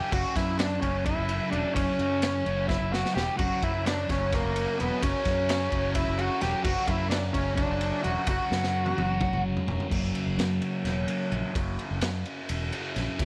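Lightly reverberant studio ambience frames this trippy, mysterious psychedelic rock fragment in 7/8, where a dark, up-front octave-fuzz lead guitar with slapback echo carries the melody until 9.4 seconds over a bright, double-tracked fuzz guitar riff with phaser, a round fingered electric bass and a gritty, punchy garage drum kit in a small pumping room, while a reedy combo organ with subtle chorus enters in the background at 3.4 seconds and takes a solo from 9.9 seconds.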